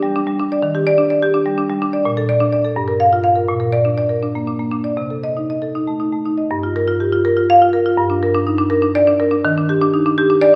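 A solo marimba, played with medium hard mallets on padauk bars, carries this hypnotic, flowing fragment of a contemporary classical piece in G minor, moving in a rubato 6/8 at about 82 BPM with dotted-quarter pulses and tuned to A4 = 441 Hz. Its woody, vintage, band-limited tone spans G2 to F5 and sits up front, wrapped in a wet recital-hall reverb heard from further back in the room. Harmonies drift through chords such as Ebmaj7, Bbmaj7 and Cm6 before a new section begins at 6.5 seconds on Gm7, and the passage breaks off at 10.6 seconds.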